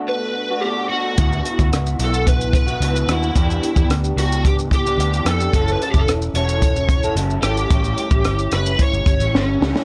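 An overdriven slide guitar sings the chorused melody over a dark, lo-fi electric guitar whose slightly broken-up fingered accompaniment wavers with warbly pitch drift, while a round, foam-muted electric bass and an up-front cocktail drum kit with a punchy kick, a high-tuned snare, hi-hat, rim click and shaker join at 1.2 seconds, all under light reverb in this nostalgic, sunny bedroom-pop excerpt that closes on a drum fill at 9.3 seconds.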